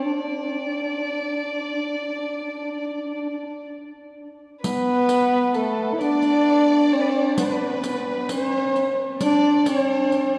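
Passionate and festive, this Arabic maqam ensemble piece moves at 131 BPM in a straight 10/8, with a warm, up-front French horn carrying the classical-style melody with light vibrato above a dark, woody single violin on the second line. At 4.6 seconds a lush symphonic violin section joins that line and a close, dry riq adds bright jingles, all set in a cathedral-like reverb with a 5.7-second tail.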